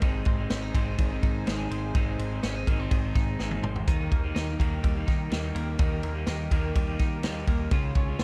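A punchy, up-front vintage drum kit with dark cymbals drives this youthful, nostalgic jangly indie pop passage at 125 BPM in a straight 4/4 in Ab major, with a short drum fill from 3.4 to 3.9 seconds. Around it, a clean, compressed twelve-string electric guitar picks arpeggios through tube saturation and spring reverb, while a slightly broken-up, lo-fi electric guitar through a small old amp plays accompaniment and a warm picked electric bass holds the low end. A hollow, flute-like pad with ensemble chorus sustains mellow chords in the background as the harmony moves from Ab to Eb and then Db, all in a dry room.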